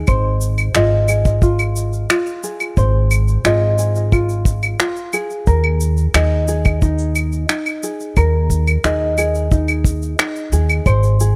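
A mellow, thumb-plucked tenor ukulele opens this playful folktronica excerpt, spinning light arpeggios between Eb4 and Eb5 that carry a vintage 12-bit sampler grit and a trail of tape echo. Beneath it, a woody, dark upright bass with steel strings plays pizzicato in the low register, sitting up front alongside a tight, dry kick drum with a smooth, rolled-off top. Electronic claves, shaker and finger snaps add a produced, tape-warm texture that was re-recorded in a small room, and a small room ambience surrounds the whole blend. At a relaxed 89 BPM in straight 4/4, the harmony rests on Ab6 before moving to Ebsus4 at 5.5 seconds. The parts enter almost together from the start and run through to about 11.4 seconds, giving the short cut a friendly, intimate, homespun feel.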